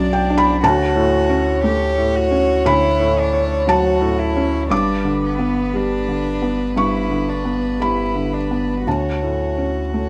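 A slow rubato pulse of about 59 BPM in 4/4 carries this fragile, melancholic neoclassical excerpt for piano and strings, tuned slightly high at A4 = 441 Hz. A felt-muted upright piano sits up front as the accompaniment, soft and intimate with a short sustain and audible action noise, spanning from B1 up to D6. Alongside it, a single bowed violin carries the melody in a narrow band from B4 to D5, its tone dark and woody with vibrato, heard from a distance. One bowed cello plays a second line, rich and floating, with a soft attack and the pure sul tasto colour. A clean, smooth sine sub bass holds the bottom between G1 and D2, while the piano, violin and cello share a plate reverb within a wet studio space and a rough home-demo mix. The harmony moves from Bmadd9 to Dmaj7 at 0.6 seconds, reaches G at 4.7 seconds and returns to Dmaj7 at 8.9 seconds.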